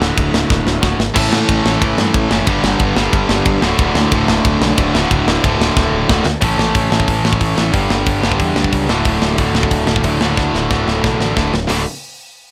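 A straight 4/4 drive powers this energetic, upbeat punk rock clip: a tight metal drum kit sits up front with a tight kick and rolled-off top, firing fills at 0.5 s and 5.8 s, while a fuzzy, overdriven picked electric bass and an overdriven electric guitar riffing in the background move through D, A and G, joined at 1.1 s by a bright, tight distorted guitar riff up front, in a dry, close-sounding room.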